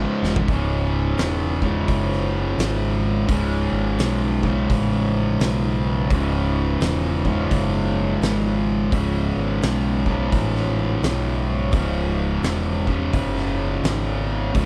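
A swung 85 BPM groove in 4/4 drives this brooding, heavy stoner and doom metal fragment in C# minor, where an oversized, low-tuned acoustic kit with a fat snare and punchy kick enters at 0.2 s with a brief fill and rings in a bright, pumping stone room, while a double-tracked fuzz guitar riff sits up front over a dark, round, overdriven picked electric bass growling on C#m, all in a fairly dry mix.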